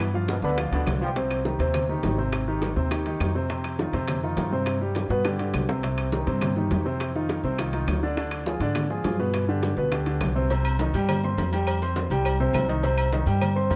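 A bright, punchy trombone section with light vibrato opens this passionate, danceable salsa excerpt, over an intimate upright piano, pizzicato upright bass, bongos with cowbell, and claves; very quiet congas join at 0.1 seconds and ringing metal-shell timbales with agogo bells at 0.3 seconds, and the horns drop out at 1.1 seconds. The piano sits up front, polished and present, with audible action noise and long sustain, while the woody, steel-strung bass also sits up front and the round, low-tuned bongos and dry claves stay in the background. A moderate plate reverb adds space, and a drum fill arrives at 5.1 seconds.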